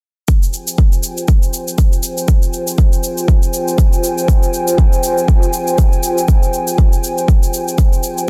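A deep electronic kick drum sits up front, driving this short afro house cut at 120 BPM in F minor, with a 16th-note swing that gives the 4/4 groove a hypnotic sway. Beneath it, a dark, detuned analog pad built from square and sawtooth waves with a sub octave and ring modulation holds a sustained Fmadd9 chord from 0.3 s, its slow attack, chorus and sidechain pumping adding a moody motion, while a quiet produced shaker ticks along until 8.3 s. The sound is dry, dense and heavily limited.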